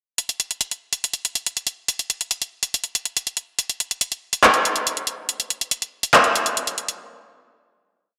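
A dreamy, reverb-soaked plate sound frames this eerie, hard-hitting half-time hip hop piece, where an up-front, overdriven electronic trap drum kit with handclaps and bright hats plays a bouncy beat of sixteenth-note hi-hats and fast rolls through a breakdown from 0.2 to 7.0 seconds before a final hit rings out until 8.2 seconds.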